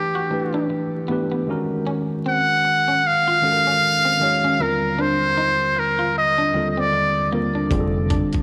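A buzzy, breathy trumpet with a metal mute carries the jazz-style melody up front in this soulful neo-soul R&B excerpt, its scooped notes and light vibrato trailed by tape echo. A worn, slightly out-of-tune tine electric piano with gentle overdrive sits close beside it, while a slightly broken-up electric guitar picks a second line in the background over a swung sixteenth-note feel. A round, dark fingered bass and a gritty sampler-style drum kit of thumpy kick and hi-hat arrive only at 7.7 s, and echo-chamber reverb and vinyl crackle give the whole a dusty glow.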